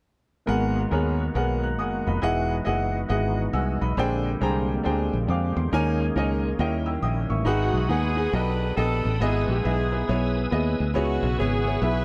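A swung 4/4 pulse at 137 BPM drives this soulful, solemn uptempo gospel fragment in G# minor, where a brilliant, woody upright piano with tape echo and a punchy, foam-muted fingered electric bass sit up front, a reedy tonewheel organ holds sustained chords through fast rotary speaker and chorus vibrato with audible key click, and a clear, tight horn section enters at 7.5 seconds carrying the melody with light vibrato and tape echo, all set in light reverb within an echo-heavy mix.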